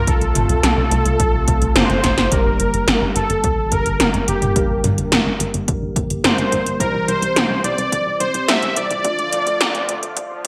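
A smooth, detuned supersaw melody with 12-bit sampler grit and digital delay opens this moody, nostalgic synthwave excerpt at 107 BPM over a brassy, chorused analog pad and a tight, punchy sequencer bass with tube saturation, both pumping to the sidechain, before up-front gated-reverb pad drums with metallic hats and a punchy, tape-warm electronic kick arrive at 0.1 seconds; a band accent and drum fill then lead to 2.3 seconds, where a clean tine electric piano adds chorused stabs in the background and the pad takes on a filter sweep, within a bright 1980s-style plate-reverb sheen.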